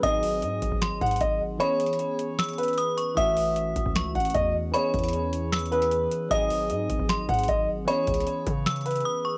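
A half-time trap beat at 153 BPM drives this eerie, hard-hitting hip hop fragment in C# minor, tuned to A4 = 437 Hz. A booming analog drum machine with a deep kick, tonal snare, metallic hats and finger snaps sits under a punchy, heavy 808-style bass, with the kick dropping out from 1.6 to 3.2 seconds and the track falling silent at 9.1 seconds. Up front, a dark, boxy concert grand carries the melody with tape echo, shadowed by a ringing, inharmonic FM bell line with chorus, while a bell-like tine electric piano with phaser accompanies through chords such as G#7, C#m7 and A6, all wrapped in light reverb and lo-fi cassette character.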